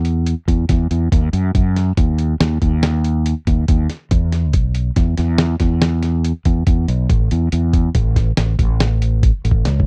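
Driving and bright, this short cut from a longer progressive instrumental piece moves at 140 BPM in an uneven 7/4 with a straight feel, tuned slightly sharp to A4 = 441 Hz. A fretless electric bass with a touch of chorus sits up front, its tone warm and direct, working low between A1 and F#2, while a lo-fi sampler-style drum kit of hi-hat, thumpy kick and fat snare sounds compressed, pitched down, muffled and tape-warm. The dry, close 1970s-style studio sound keeps both parts intimate, and a drum fill closes the passage at 9.2 seconds.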